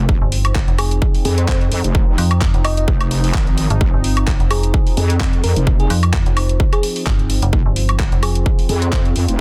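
Bouncy and aggressive, this short bass house cut in F minor runs at 129 BPM in 4/4 with a 16th-note swing of 55%, sitting on a single F5 chord. A punchy, overdriven electronic kick sits up front from 0.1 seconds, joined by a garage drum kit of handclaps, bright hi-hats and woodblock. Two basses share the low end: a heavy, wobbling square-and-sine bass with detuned unison voices, saturation and chorus, and a metallic FM bass with tube saturation and a quick, decaying attack, both carrying sidechain pumping. Behind them an evolving sawtooth-and-triangle pad, wave-folded and resonant with a filter swell, phaser and chorus, holds sustained chords, while a sparkling, bell-like FM electric piano enters at 0.8 seconds in the background, colored by tremolo and dub echo. The mix is dry and dense, with a heavily limited modern master.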